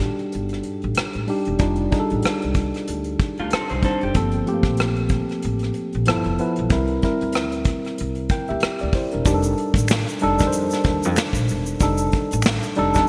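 A worn, slightly out-of-tune tine electric piano sits up front through a combo amp, its clean tone carrying this introspective, sultry R&B and neo-soul passage at 94 BPM in 4/4 with a gentle sixteenth-note swing. Beneath it, a woody pizzicato upright bass on steel strings holds the low end, while a vintage brush drum kit sits forward in the mix: dark and smooth, with a medium-tuned snare, tight kick, rim click and hi-hat. The harmony moves from F13 through Gm11, G13 and C7 before returning to F13. A lo-fi, slightly broken-up electric guitar through a small old amp, picked, compressed and bathed in lush chorus, appears only briefly as a second line between 3.4 and 4.3 seconds. From 9.3 seconds, a close, dry tube shaker and finger snaps join quietly. A moderate hall reverb and bright 1980s-style digital production frame this passage, which is cut from a longer piece.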